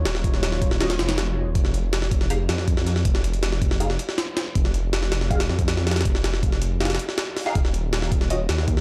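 A warbling, lo-fi pad holds an Ebm9 chord over a thick, beating detuned saw bass, giving this dark, nostalgic drum and bass excerpt a brief hazy opening before the pad drops out at 1.4 s. A compressed, pitched-up jungle sampler-style kit with a thumpy kick and high-tuned snare sits up front beside the menacing bass. From 0.8 s, muted, nasal dub chord stabs drift in the background through phaser and echo, all captured in a dry, gritty hardware sound.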